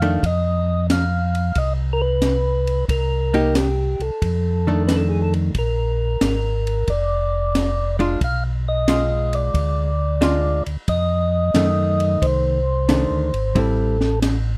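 Soulful and greasy, this brief section cut from a longer soul jazz organ trio piece swings at 90 BPM in F mixolydian, moving through chords such as Cm7, Bb7 and Bdim7. A percussive tonewheel organ with third harmonic percussion and a slow rotary speaker carries the melody. A clean, compressed hollow-body archtop guitar, picked and amplified, plays the accompaniment. A round, mellow second tonewheel organ with chorus vibrato and its own slow rotary speaker handles the bass. A compact cocktail drum kit with a high-tuned snare, punchy kick and rolled-off top rounds out the group, all set up front in a rough home demo mix with light reverb.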